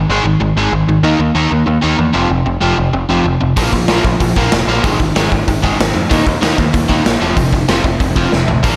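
Straight 4/4 punk rock with an upbeat, rowdy drive: a double-tracked, compressed, overdriven electric guitar riff moves through Ab5, Eb5, F5 and Bb5 chords over a growling, bright picked bass with its own overdrive, until a raw, gritty garage drum kit with a punchy kick and a pumping stone-room sound enters at 3.6 s and caps the passage with a fill at 8.3 s, the mix bathed in a lush hall reverb for a big arena feel.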